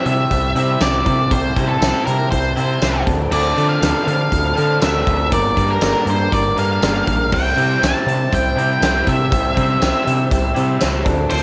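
A moderate spring reverb gives this brief cut from a longer indie rock piece a roomy, studio-polished sound, with a cool, moody feel over a straight 4/4 pulse. Up front, an octave-fuzz lead guitar carries the melody in a dark, distorted voice with slapback echo, while a big acoustic drum kit brings a punchy kick, fat snare, bright cymbals, hi-hat and tambourine. A growling fingered bass with overdrive sits heavy underneath, and an electric guitar through a small old amp plays a slightly broken-up, lo-fi riff. In the background, a raw garage guitar adds a bright overdriven riff with lush chorus and slapback echo, dropping out at 11.1 seconds. A very quiet, mellow organ-string ensemble holds soft, sustained chords with a phaser shimmer beneath it all as the harmony moves from C through Dm7 and Gm before returning to C.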